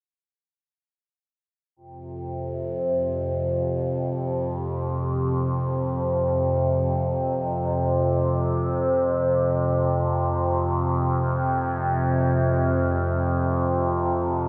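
Dark and cavernous, this free-time ambient excerpt places a single up-front, overtone-sweeping drone alone from 1.9 seconds, its bright, resonant sawtooth, sine and triangle tones laced with ring modulation and moving overtones, swelling in with a slow attack and sustaining through chorus, built-in reverb and tape echo inside a wet cathedral space with a 5.7-second decay.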